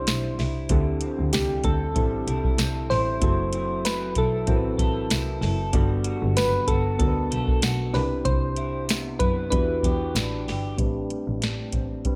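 A soft vintage rhythm box sits up front in this hazy, wistful stretch of bedroom pop, its deep kick, crisp snare and metallic hats sounding dry and tape-warm at 95 BPM in 4/4 with a light swing on the sixteenths. Beside it, a muted double bass is bowed by one player, dark, veiled and boxy with a light vibrato, also placed up front. A soft, round electric-piano-like synth carries the melody between G4 and C5, its detuned tone gently decaying through analog chorus and delay before it drops out at 10.4 seconds. Underneath, a twangy, slightly broken-up electric guitar through a small old amp adds picked accompaniment with a warbly pitch drift, while a reedy electric piano heard through its built-in speakers takes on a cassette-tape coloring, and a jingly tambourine sits in the background until 10.3 seconds. The chords drift from Cmaj7 through D9sus4, F#m7b5 and Gmaj9 to Em7, then a filter sweep begins at 10.8 seconds as the music settles onto Am11, all of it bathed in a dreamy plate reverb in this short cut from a longer piece.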